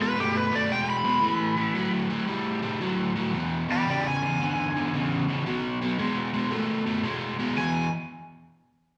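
Raunchy and swaggering, this short rock excerpt struts at 114 BPM in 4/4 with a swung eighth-note feel in E mixolydian, moving through B5, A5 and E chord changes. An up-front, crunchy double-tracked electric guitar picks a low riff while an overdriven slide guitar, played with fingerpicks, carries the melody higher up, both sounding from 0.0 to 7.9 seconds. The band plays live in one room, bathed in a wet, large studio reverb that gives the gritty tones a roomy bloom.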